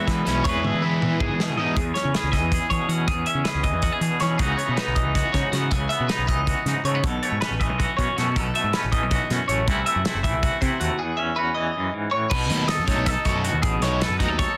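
A twangy, tremolo-shimmered clean electric guitar, a bright twelve-string electric picking phaser-tinted arpeggios and a double-tracked, overdriven semi-hollow guitar with spring reverb open this intricate, wistful math rock and midwest emo excerpt in E major at 319 BPM (eighths) in 7/8, joined at 0.1 seconds by a fuzzy, overdriven electric bass and a punchy, up-front indie drum kit whose fill runs from 0.6 to 1.8 seconds, as the riff drops out until it returns at 12.5 seconds over lush chords such as Emaj7, C#m11 and B9sus4, all in a dry, dense, heavily limited modern mix.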